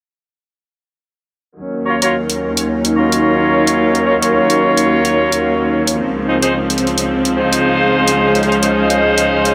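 Soaked in a huge, dreamy reverb, this funky, swaggering glitch hop excerpt at 109 BPM in Eb dorian opens at 1.6 s with a rich, smooth bowed string section holding low-passed, filter-swept chords, soon joined by clear, vintage horn stabs with light vibrato and tape echo up front, layered electronic hi-hats re-recorded in a small room, and a warbling, nostalgic lo-fi pad with chorus and a slow attack in the background, as the harmony moves from Ebm7 to Dbmaj7 at 6.0 s.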